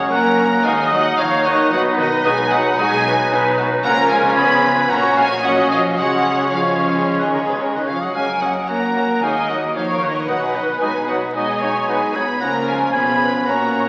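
A lush, focused violin section carries the melody of this cheerful, graceful classical-period movement for symphony orchestra, moving at a quick 112 BPM in a straight 4/4. A second, more distant violin section traces its own line in the background from 0.1 s, while a clear, close-miked oboe, a clarinet set further back and a very quiet flute section of pure, crisp-edged tone add further lines. The violas give the most prominent accompaniment, smooth and even with rich vibrato, joined by a soft-attacked bassoon and a mellow French horn section holding sustained chords. Cellos and double basses anchor the bass from the background, the basses adding expressive portamento. The harmony cycles through F#, D#m, G#m7/B and C# across the roughly 14-second passage, which is cut from a longer piece. The whole passage sits in the reverberant space of a scoring stage, with a 1.7-second decay, and is heard through the crackle of a very old 78 rpm record.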